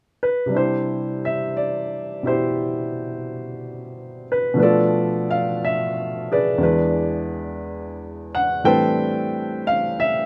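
Late-night and romantic, this slow jazz excerpt at 59 BPM in 4/4 carries a swung eighth-note feel in C major, tuned to A4 = 438 Hz, as a woody, natural-sounding upright piano sits up front in a dry, closely miked, detailed sound, playing accompaniment from 0.2 to 10.3 s through Cmaj7, Bm7b5, E7 and Am11.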